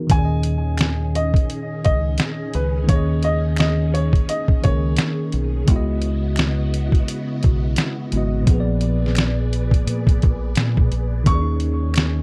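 A worn, slightly out-of-tune tine electric piano opens this mellow, nostalgic lo-fi hip hop excerpt at 86 BPM with a 16th-note swing, joined by a gritty, compressed sampler-style drum kit with a thumpy kick and fat snare, a round, dark fingered dub bass up front, a woody, boxy upright piano melody with audible action noise and analog delay that drops out at 5.3 seconds and returns at 11.3 seconds, slow-attack sawtooth string-machine violas with phaser and ensemble chorus holding chords such as D#7sus4 and C#m11, and close, dry finger snaps in the background, all under light reverb and cassette tape character.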